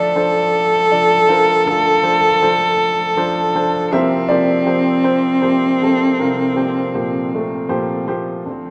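An acoustic folk-pop ballad in a slow, straight 6/8 at 53 BPM, reflective and melancholic, where a woody, open upright piano carries the melody through an analog delay while a single bowed cello with a nasal, boxy tone and light vibrato sings a smooth, even second line, both up front over light reverb in a rough home-demo mix, the harmony moving from Dm7 to C7sus4 at 3.9 seconds in this brief excerpt tuned to A4 = 441 Hz.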